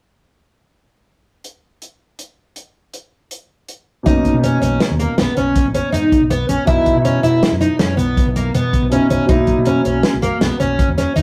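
This driving, intricate progressive instrumental in 7/4 at 161 BPM opens with a dry, dark soul drum kit alone at 1.4 seconds, its medium-tuned snare, tight kick and hi-hat sitting up front with a rolled-off top. A concert grand piano with a deep bass joins at 4.0 seconds, and at 4.1 seconds a full-bodied, shimmering, octave-doubled fingerpicked twelve-string guitar arrives with prominent arpeggios alongside a growly, round, woody fretless bass. Together they move through Bmaj9, C#m7/B and F#7 in B major, in a rough rehearsal-room recording with moderate reverb.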